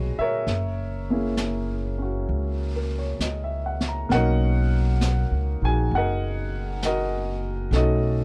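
A wistful, melancholic jazz ballad at 66 BPM with a gentle swing, heard in a short cut from a longer piece and voiced on F#7, Bmaj9 and B9 chords. A smooth, vintage grand piano sits up front in accompaniment, joined by a woody pizzicato upright bass on steel strings, while a distant, roomy brush kit with a rolled-off top enters at 0.5 seconds on brushed snare and hi-hat. The recording is dry, with little reverb.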